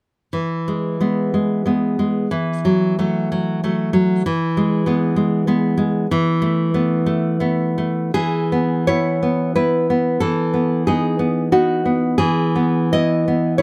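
A rubato 3/4 lilt drifting between 78 and 101 BPM carries this short, nostalgic romantic cut for solo classical guitar in E major, where the fingerpicked nylon-string guitar, deep and up front with fresh strings and audible finger squeak, moves through E, F#m7/E, Esus4 and B7/E under close, detailed microphones with little reverb from 0.3 to 13.6 seconds.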